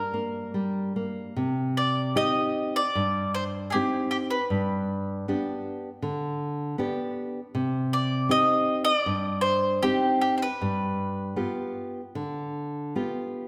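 Passionate and mournful, this fado excerpt moves at 78 BPM in 4/4 with uneven, rubato beats, centred in C harmonic minor and tuned slightly below standard pitch. A bowl-back mandolin carries the melody between G4 and Eb5, its picked double strings sounding bright and up front until it stops at 11.5 seconds. Beneath it, a fingerpicked nylon-string guitar in classical style supplies the accompaniment from G2 to G4, full-bodied with fresh strings and an audible finger squeak, continuing alone to the close at 13.5 seconds. The harmony opens on Gm, settles into Cm at 1.4 seconds, and turns through G and back to Cm before arriving on G7 near the end. A wet scoring-stage reverb surrounds the pair with a spacious tail, though both instruments stay close and present.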